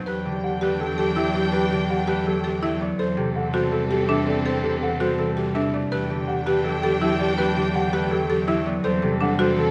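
Minimalist classical pattern music with an urgent, hypnotic pull, this short cut from a longer piece sets a buzzing, woody marimba's arpeggios and a ringing, fingerpicked concert harp beneath a smooth, vintage grand piano melody, while an airy, hollow alto flute traces a soft second line in the background, a lush bowed violin section holds sustained chords, and a single rich cello anchors the bass on E, all in light reverb as the harmony alternates between Em11 and C69/E.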